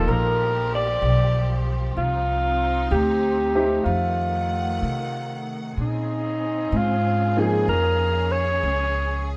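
From the first moment, a breathy, mellow alto saxophone sings an up-front subtone melody with scooped notes over a growly, woody pizzicato upright bass, a warm baby grand piano and a lush bowed string section with vibrato, giving this short, swung, melancholic and intimate jazz ballad fragment a vintage glow in light reverb.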